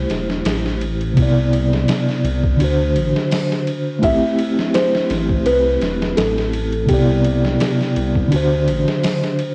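A slow, lightly swung 84 BPM trip hop groove in 4/4 rides on a muffled, pitched-down sampler-style drum kit with a thumpy kick, medium-tuned snare, hi-hat and ride, all overdriven and tape-worn, under a deep, rumbling detuned saw bass with a beating, tube-saturated edge. A mellow tine electric piano sits up front with tremolo, 12-bit sampler grit, plate reverb and tape echo, cycling through Am7, Cmaj9 and D7 in A dorian. At 4.0 s a felt-muted upright piano enters with a soft, boxy melody where the hammer action is audible, and this smoky, hypnotic cassette-recorded fragment is cut from a longer piece.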